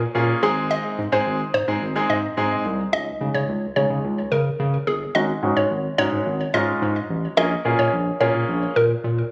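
This dance-pop excerpt moves at 108 BPM in a straight 4/4, in D-flat major, with an upbeat, euphoric mood. A hollow, bouncy square-wave pluck carries the melody between Ab4 and Eb5, its fast attack and decaying filtered notes softened by chorus and delay. Underneath, a round analog bass with a deep, dark character sits up front from G1 to Db3, holding sustained notes. A brilliant, polished grand piano plays short-sustained accompaniment from Ab3 to Ab4 through a low-pass filter. From 2.9 seconds a build-up takes hold, with a filter sweep on the piano, as the chords move from Ab through Dbsus2 and Ab7sus4 to Bbm7. A lush hall reverb surrounds the parts, and the sound carries the character of a recording made on a phone in the room.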